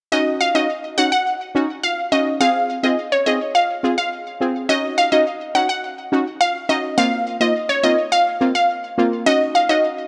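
Awash in a lush hall reverb, this sultry, hypnotic dancehall fragment moves at 105 BPM in Eb dorian, cycling through Ebm7, Fm and Bbsus2. A crystalline, detuned wavetable pluck carries the melody up front, its bright, digital tone thickened by a sub octave and a filter sweep, with chorus and delay trailing each fast, decaying note. Beneath it, a punchy sawtooth brass stab with chorus supplies the accompaniment, its filtered attack biting briefly before fading away.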